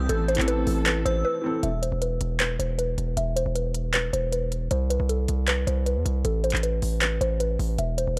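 Dark, eerie half-time trap at 156 BPM, cut from a longer piece, where a woody, nasal mallet-like synth pluck carries the melody through chorus, low-pass filtering and delay over a heavy, saturated 808-style bass and an up-front trap kit with crisp hi-hats and handclaps. In the opening 1.6 seconds, a felt-muted upright piano with audible action noise and a lush string section bowed sul tasto in the background frame the Am harmony, while a ringing, inharmonic FM bell shimmers high above through phaser and delay. After a short break at 1.2 seconds, the piano, strings and bell stop, leaving the pluck, bass and drums to carry the dark, warm production to the end.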